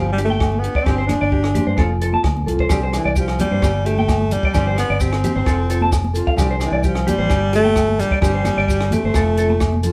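Recorded with the band playing live in one room, this short cut from a longer highlife guitar band piece has a moderate studio reverb that gives it an easy, carefree glow at 130 BPM in a straight 4/4. Up front, a breathy, close-miked alto saxophone carries the solo melody in a whispered, intimate jazz style, with soft attacks, scooped notes and vibrato. A bright, twangy clean electric guitar picks compressed arpeggios up high, while a small, boxy nylon-string guitar fingerpicks its accompaniment further back. A round, punchy fingered electric bass anchors the harmony as it cycles through G, Csus2/G, F and Csus2. A dry compact cocktail drum kit with a punchy kick, hi-hat and rim click comes in at 0.2 seconds, joined in the background by high-tuned, ringing congas played with soft hands and vintage-sounding agogo bells. Grainy, mellow maracas slip in at 2.7 seconds, adding a final layer of texture to the warm, carefree groove.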